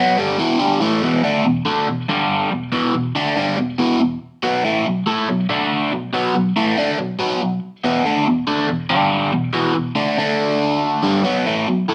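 Set in a moderate studio reverb, this sunny, driving rock excerpt features a lone overdriven electric guitar, warm, picked, double-tracked and up front with a phaser coloring its tone, as it moves through E5, G5, B5 and D5 power chords in a straight 4/4 for its full 11.9 seconds.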